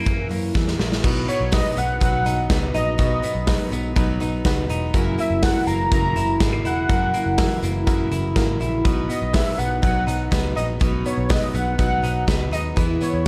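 Nostalgic and youthful, this jangly indie pop excerpt features a drum fill at 0.6 seconds before a reedy, slightly out-of-tune electric piano enters at 1.0 seconds with fast tremolo, sitting in the background beneath a velvety, detuned sawtooth synth lead that carries the melody through chorus and tape echo. A shimmering, octave-doubled twelve-string acoustic guitar and a clean, hollow-body semi-hollow electric guitar playing arpeggios ring over a round, foam-muted electric bass and a punchy, up-front big rock drum kit, with a jingly tambourine joining very quietly from 1.3 seconds. The dark production adds light reverb as the chords move between F#7 and B before arriving on E.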